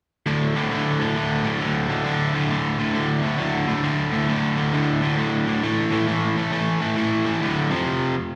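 Swung eighths at 134 BPM in 4/4 drive this swaggering rock excerpt, where a crunchy, bright, overdriven electric guitar, picked, double-tracked and up front with slapback echo, plays solo from 0.3 to 8.1 seconds in a low register, moving through D5, A5, D5 and F5 chords, tuned to A4 = 441 Hz and heard live through a venue PA with moderate club reverb.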